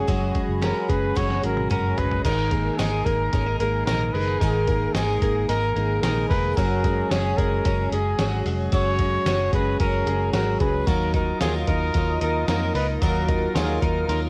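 Cut from a longer piece, this home cassette recording has a light reverb. It is jangly indie pop at 111 BPM in a straight 4/4, tuned to A4 = 442 Hz, with a restless, bittersweet mood as the chords move from Gbsus2 to Absus2, back to Gbsus2 and on to Ebmadd9. A breathy, mellow trumpet carries the melody up front with vibrato, scooped notes and a whispered, intimate tone, colored by cassette tape. Beneath it, a picked twelve-string acoustic guitar shimmers with fresh strings and finger squeak, and a bright, twangy twelve-string electric guitar plays clean arpeggios. A dark, round, foam-muted fingered bass anchors the low end, while a lo-fi sampler-style kit, pitched down and muffled with a thumpy kick and its own cassette tape coloring, plays throughout and adds a drum fill from 1.2 to 2.2 seconds. A hollow, flute-like pad with chorus sits in the background, sounding only in the opening seconds and again from 11.2 seconds.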